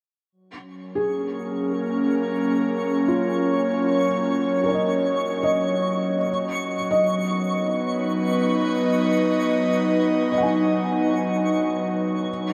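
An airy, breathy pad with a chorus sheen sits up front, fading in from the start as it holds sustained chords over F# and then B/F# at 6.3 seconds in this peaceful, luminous ambient piece at 60 BPM in 3/4, while a felt-muted upright piano plays mellow, intimate arpeggios through delay with audible action noise and a twinkling granular texture enters at 1.1 seconds with a sparkling octave-up shimmer, all bathed in a huge, wet reverb.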